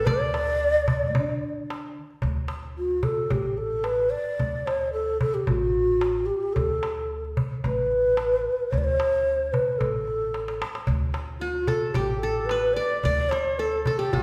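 A breathy, mellow low ney opens this passionate, warm Arabic maqam ensemble passage in a steady four, joined at once by plucked qanun, upright bass and, a moment later, darbuka. The end-blown reed-cane ney carries the melody up front, its tongued, expressive phrases colored by vibrato and softened by rolled-off highs. The qanun adds a second line with a bright-edged, triple-string sparkle, but drops out at 1.6 seconds and returns only at 11.4 seconds. Underneath, the pizzicato gut-string bass gives a woody, dark, thumpy foundation, while the small metal-shell darbuka sounds crisp, high, close and dry near the front, with a drum fill at 10.3 seconds. The ensemble sits in a reverberant recital hall that lends the music a spacious, concert-hall glow, and the passage is cut from a longer piece.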